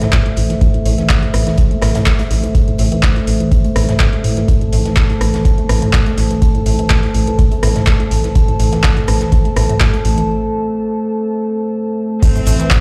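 An up-front, tape-warm electronic kick drives this raw, hypnotic acid house excerpt at 124 BPM in A minor, with a booming, overdriven analog drum machine's metallic hats, claps and cymbals and a background acoustic kit, while a rubbery, resonant acid bass riff, a round sine sub bass and a moody, detuned square-and-sawtooth pad all pump over a single Am chord in a large reverberant room, before earthy bowed chamber strings appear at 12.2 s.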